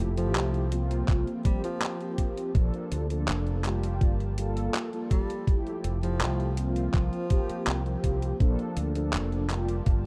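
Opening on detuned, brassy synth chords soaked in lush chorus, cassette-tape grit and tape echo over a round, dark fretless bass with tube saturation, this woozy, hazy vaporwave excerpt at 82 BPM drifts through Fmaj9, C7sus4, Bbmaj7 and Gm9, while a very quiet, nostalgic warbling pad hovers beneath, a close-miked tenor saxophone with a warm vibrato, a soft attack and a touch of tape echo carries a low melody until 8.0 s, and a detuned, sampler-style 8-bit drum machine of handclaps and hi-hat in a small room is joined at 1.1 s by a thumpy, up-front electronic kick.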